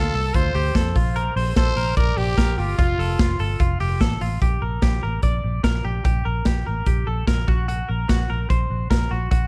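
Bright and breezy, this jangly indie pop excerpt opens with a raspy, growling trumpet carrying the melody with light vibrato and analog delay, which drops out at 3.8 seconds. A bright, clean, compressed twelve-string electric guitar picks twangy arpeggios over a round, foam-muted fingered bass that sits dark and amped beneath. A saturated garage drum kit stays up front, with a punchy kick, medium-tuned snare and hi-hat rolled off on top, all in a small room with a dark, warm production.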